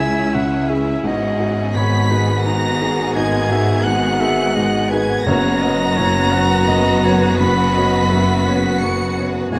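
This tender, uplifting cinematic fragment in a rubato 3/4 opens with strings, winds, horns and piano together: a lush vibrato violin section carries the high, expressive melody over second lines from a pure, hollow concert flute, a smooth classical clarinet and a focused second violin section, while a rich viola section and a vintage-toned grand piano accompany, a mellow French horn section holds sustained chords, a distant cello section and an even double bass section anchor the bass, and articulate hard-mallet timpani strike briefly at 5.3 s, heard in a moderate scoring-stage reverb with close, detailed miking and vinyl crackle.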